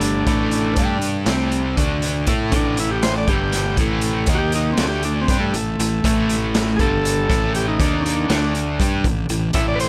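This dark, hypnotic psychedelic rock cut opens with the full band at once: a raw garage drum kit, an overdriven electric guitar riff, a fuzz-drenched fingered bass and a buzzy transistor combo organ all start at 0.0 s. The tempo is a brisk 239 BPM counted in eighths, in a straight 7/8 that keeps the A minor groove hypnotic. The combo organ carries the melody as a solo throughout, its vintage, overdriven tone shaded by light vibrato and trailed by tape echo. Beneath it, the double-tracked, compressed guitar sits up front with a harmonic tremolo shimmer, while the bass rumbles round and dark with overdrive and fuzz. The drums sound punchy and saturated in a small, pumping room, with a rolled-off top and a medium-tuned snare. The organ line circles around A5, moving through G5, C5, D5 and D#5, and the dry mix carries little reverb.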